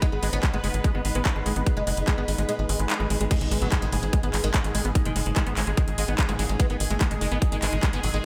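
Driving and intense, this short cut from a longer psychedelic trance track runs at 146 BPM in G# minor, with a straight 4/4 pulse led by a tight, up-front electronic kick and a layered garage kit of metallic hats, handclaps and crash cymbal, both set in studio reverb. A bright, woody oud carries the melody with its plucked double strings, colored by phaser, tape echo and sidechain pumping. Underneath, a punchy, nasal sequencer bass with a filter pluck and fast attack sits up front, while a squelchy, resonant liquid acid bass riff with chorus and tape echo stays in the background. A bubbling texture of random filter steps holds sustained chords with chorus and reverb, and a very quiet, blurred granular cloud pad adds a mellow, detuned haze. The kick drops out at 2.5 seconds, and the drop arrives at 3.3 seconds with a faint electronic impact, part of a very quiet swell, impact and zap effect, all under light digital ambience.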